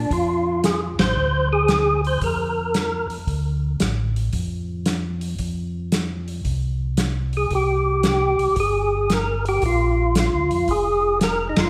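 Soul jazz organ trio in a swinging, soulful mood at 113 BPM in 4/4 with a swung eighth-note feel, tuned slightly flat to A4 = 436 Hz, with band accents at 0.9 and 11.5 seconds over chords moving from Bb9 through F5 and C5 to Bb7. A fat, percussive tonewheel organ with key click, light overdrive, chorus vibrato and a slow rotary speaker carries the melody between D4 and C5, dropping out from 3.1 to 7.4 seconds, while a second, round and mellow tonewheel organ with the same slow rotary and chorus vibrato holds down the bass line from F1 to F2 throughout. A dark, punchy soul drum kit with hi-hat, ride, snare and kick sits up front, the whole short cut from a longer piece bathed in a moderate concert hall reverb.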